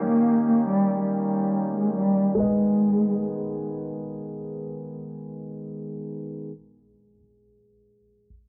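An expressive bowed cello with vibrato and portamento sits up front for the first 3.6 seconds of this ominous, tense half-time hip hop fragment, over a mellow, short-sustained concert grand piano in the background and a reedy, nasal, breathing harmonium holding chords, all in a dark, warm production with a filter sweep at the start, a moderate scoring-stage reverb, and a move from D#7 to G#m at 2.4 seconds.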